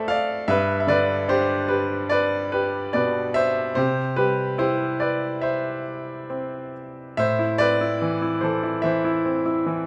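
A grand piano sits up front and sounds natural, with a moderate recital-hall reverb that gives each note a graceful tail. This is a lyrical classical solo piano piece, cut from a longer work, with a wistful, melancholic mood. The lone piano plays for the full 9.9 seconds, ranging from G2 to F5, and its clear tone carries the music's gentle rubato over a steady four-beat metre. The harmony moves from G to C, and at 7.2 seconds a new passage opens on an A minor chord with an added ninth, deepening the music's sense of longing.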